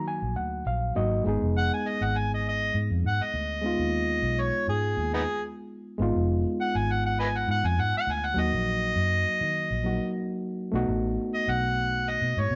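An overdriven, gritty harmonica with punchy tongue slaps comes up front at 1.6 s to carry this mournful, smoky swung blues fragment, over a reedy electric piano driven through a combo amp, which opens with a short fill, and a dark, round, foam-muted vintage fingered electric bass, all sitting in a moderate studio reverb with a dulled top end.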